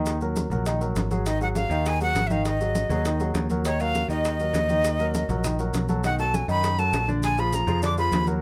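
A brief cut of sultry, fiery Afro-Cuban jazz opens on a deep-voiced concert grand piano with long sustain and a growly picked electric bass up front, over grainy maracas and background congas and bongos (thin-skinned and round, low-tuned respectively), before a breathy, bright jazz flute with vibrato and a crisp, chiffy attack takes the melody at 1.3 s, in a close, detailed recording with light reverb.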